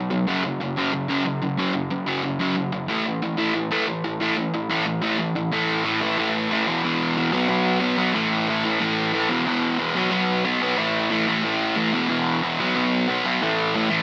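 A sludgy, overdriven electric guitar opens this rowdy punk cut, playing alone at a brisk 182 BPM in a straight 4/4. The double-tracked, picked power chords sit up front, moving from F#5 to A5 across the first stretch and staying between E2 and B3. At 5.5 seconds the part shifts into a new section built on a repeating E5, B5, A5 cycle that carries the energy through to the close at 14.0 seconds. A wet studio reverb surrounds the guitar, while the small speaker sound lends it a boxy, lo-fi character. Cut from a longer piece, the recording captures a short, energetic burst of raw chording.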